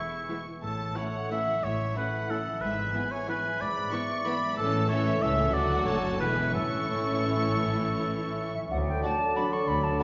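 A sweeping, festive classical passage in 3/4 with a rubato feel opens with a dark, smoothly bowed studio violin section carrying the melody, while a warm oboe sings a second line up front and a bright concert harp rings out arpeggios in the background. Just after, a woody chamber violin section adds another second line and a rich, focused viola section fills in the accompaniment, and by 0.6 seconds expressive cello and double bass sections settle in beneath as the bass, the cellos sliding with soft portamento. The harmony moves among its chords as the strings sustain their vibrato-laden lines, supported by the oboe's soft-attacked voice. Near the end, at 8.5 seconds, an airy, silvery flute enters with a second line, soon joined by a warm clarinet, a mellow bassoon and a background French horn section holding sustained chords as the music moves into a new section. The whole is bathed in the reverb of a resonant hall, giving this cut from a longer piece a glowing, spacious sound.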